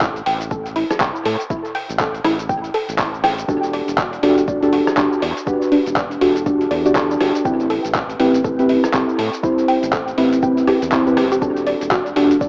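Deep house in a moody, smooth vein, cut from a longer piece and swung on the sixteenths, with a mellow analog pluck spinning chorused, tape-echoed arpeggios over a round, dark analog bass with tube saturation, both breathing with sidechain pumping. A gritty, overdriven sampler-style kit of handclaps, hi-hat, rim click and shaker, carrying tape echo, sits beside a punchy electronic kick. At 3.5 s a soft, nasal, full-bodied chord stab arrives up front with chorus and analog delay, moving through Em11 and Am9 in an echo-heavy mix that has a spring-reverb glow and a cassette, small-speaker character.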